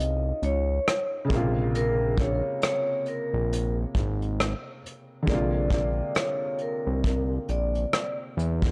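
The recording is dry and gritty, with a small room ambience and a hazy, nostalgic mood in this short cut from a longer lo-fi hip hop piece, set at 68 BPM in 4/4 with a 60% swing on the sixteenths. A vintage brush drum kit sits up front with hi-hat, a tight kick and rim clicks, its rolled-off top roughened by 12-bit sampler grit. A fat analog bass, thick and saturated with a sawtooth edge, fast attack and long sustain, also stands forward, moving through an evolving filter sweep. A felt-muted upright piano supplies soft, intimate accompaniment with short sustain, its mellow tone dulled further by cassette tape and a low-pass filter. Over the harmony of Dbmaj9, Bbm7 and Bb7, a vibraphone struck with hard mallets carries the metallic, ringing melody, dark and smooth under a slow motor vibrato and a low-pass filter, until it ends at 8.2 seconds.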